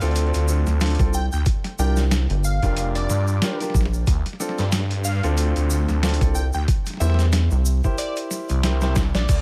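Set in a digital ambience, this short cut from a longer glitch hop piece sounds playful and funky, with a swung sixteenth-note feel in 4/4 over chords moving from Dm7 through Gm7 and back to Dm7 before landing on C7. A phased, detuned saw bass sits up front from the start, thick and swirling with overdrive. At 1.0 seconds a rubbery, hollow square bass joins it with a bouncy filter pluck, along with a thumpy, overdriven electronic kick drum that is pitched down and placed up front. A boom bap sampler-style kit supplies a gritty, medium-tuned snare, hi-hat and crash cymbal with overdrive and studio reverb, ending in a drum fill at 8.8 seconds, while a grainy, bright egg shaker ticks quietly in a live room. A warm baby grand piano plays stabs with 12-bit sampler grit, sidechain pumping and delay. Above it all, a punchy, catchy unison lead carries the melody with a filter sweep, a moving notch, vibrato and delay.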